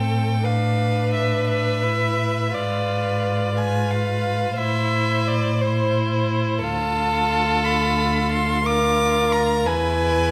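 Melancholic and elegiac, this slow romantic movement for string quartet moves in a rubato 6/8 at 59 BPM in A minor, tuned to A4 = 445 Hz, and is cut from a longer piece. A clear, close first violin carries the melody with smooth vibrato above a rich, focused second violin line and a warm, smoothly bowed viola accompaniment. Meanwhile, an up-front cello shapes the bass with expressive portamento, all in a wet recital-hall reverb as the harmony passes from Bm7b5/A through G#dim7, Am and Dm to an E chord at 9.7 seconds.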